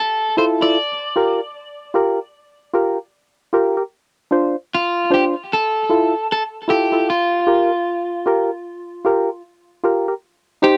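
A reggae groove at 76 BPM in 4/4 carries a 60% swing on the sixteenths, giving this short cut from a longer piece a meditative, serious mood. A percussive organ stab enters at 0.4 seconds and plays stabs between D4 and C5 for the rest of the passage; its tone is hollow and dark, with a fast attack that decays quickly, a faint noise layer and a chorus effect, and it sits up front. Alongside it, an electric guitar at the edge of break-up carries the melody from the very start, moving between F4 and D5 with a picked, compressed, slightly broken-up sound colored by subtle chorus and tape echo. The harmony moves through Fmaj7, Gm7 and Dm7, returns to Fmaj7 and Gm7, and turns to Eb6 at 10.2 seconds, with the instruments tuned slightly below standard pitch at A4 = 437 Hz. The production feels like a dry, close 1970s-style studio recording, touched with light reverb.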